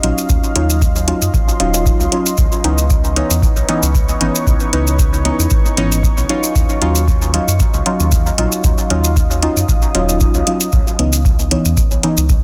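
Soft, up-front chord stabs with chorus, phaser and dub echo sit at the front of this nocturnal, meditative dub techno excerpt at 115 BPM with a light 16th-note swing, moving between D#m9 and C#m9 over a moody, detuned ambient pad with slow attack and 12-bit sampler grit, a round analog bass, tape-toned metallic electronic hi-hats recorded in a large room, a deep electronic kick, and grainy, close maracas entering at 0.2 seconds, all tied together by sidechain pumping on the pad, stabs and bass in a dense, heavily limited mix.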